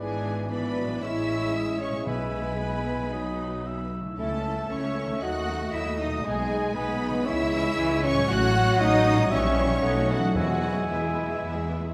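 A lush, warm violin section carries the melody high above the orchestra, its expressive vibrato sounding slightly distant in this fast, dramatic Romantic movement in E major at 116 BPM in a straight 4/4. The mood is spirited and graceful. A second, clear violin section plays a supporting line lower down in the background, joined by an airy, very quiet flute, a soloistic clarinet and a cor anglais with light vibrato and a soft attack. Focused violas and a mellow bassoon fill the accompaniment, a French horn section holds sustained chords, and a concert harp rings out fingerpicked arpeggios. Rich, smooth-topped cellos and a close double bass section anchor the bass, while dry timpani with medium mallets strike briefly at 2.1 seconds and again at 10.3 seconds. The harmony moves from E7/G# through Amaj7, a diminished passing chord and C#m before a B7 resolves home to E. The orchestra sits in a wet concert-hall reverb in this passage cut from a longer piece.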